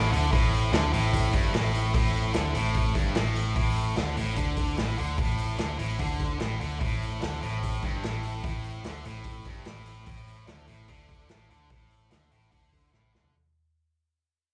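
A straight 4/4 groove drives this heavy, brooding blues rock and southern rock excerpt, heard live through a club PA with light reverb and fading out from 0.3 seconds onward. A bright, double-tracked distorted guitar riff with slapback echo sits up front over a dark, round, foam-muted picked bass, while a vintage acoustic drum kit with a punchy kick and rolled-off top pumps in a small room. A clean tonewheel organ holds sustained chords in the background through a slow rotary speaker, and a drum fill arrives at 12.9 seconds.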